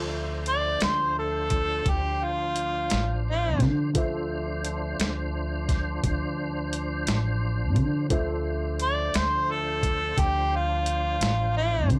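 A warm harmonica carries the melody in this brooding, soulful slow blues in 12/8. It enters at 0.5 seconds as a jazz-style solo sitting up front, with vibrato, scooped notes, a touch of overdrive and a slapback echo. Beneath it, a tonewheel organ holds full, clean sustained chords through a slow rotary speaker with chorus vibrato. A dark upright piano adds mellow, slightly detuned, vintage-toned accompaniment. A woody pizzicato upright bass and a gritty, compressed, sampler-style boom bap kit with a thumpy kick, medium-tuned snare and hi-hat sit up front, with the drums joining at 0.5 seconds. The whole excerpt rests on a single Dm7 chord, wrapped in light reverb, and is cut from a longer piece.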